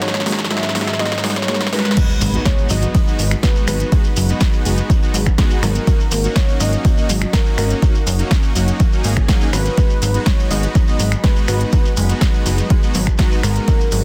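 Progressive house at 123 BPM in G# minor, bittersweet and expansive, this excerpt opens with a two-second build-up and drum fill under a very quiet riser, then drops at 2.0 s as a punchy, up-front electronic kick and a grainy shekere come in over a lush unison pad and smooth, sampler-gritted supersaw stabs with delay, followed a moment later by a funky, plucky analog bass with filter sweeps. A velvety synth lead carries the melody with chorus, vibrato and delay, joined by a soft, dark pluck playing a second line, while a round analog pluck plays very quiet arpeggios and a deep house kit adds a punchy snare, finger snaps, hats, ride and crash. The chords move between D#m7/G# and G#m7 in a dense, heavily limited, dry mix.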